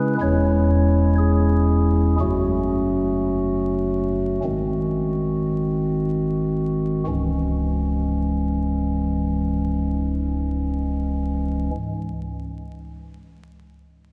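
A soft, hollow chamber organ on a stopped flute stop opens this dark, solemn classical chorale in C# minor, cut from a longer piece, its chiff sitting up front as the rubato 4/4 pulse of 42-64 BPM slows through the first 7.1 seconds over C#m/E, F#m and G#7 before resolving to C#m, the lone organ heard from further back in a wet church reverb with a touch of vinyl crackle until it stops at 11.7 seconds.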